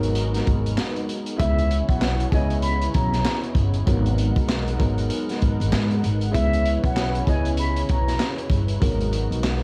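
Boom-bap hip-hop at 97 BPM in C# dorian with a swung 16th feel, dark and gritty, built on a saturated, crunchy breakbeat kit with a tight kick, handclaps and hi-hat, a thumpy, woody pizzicato upright bass up front, a mellow, vintage upright piano with audible action noise, and a smooth, detuned sawtooth analog pad with chorus sustaining G#m9 and C#m9 chords, while a breathy, distant plunger-muted trumpet plays a jazz-style wah-wah solo with vibrato and scooped notes from 1.4 to 8.4 seconds, all steeped in cassette tape grit, vinyl crackle and studio reverb in this short excerpt.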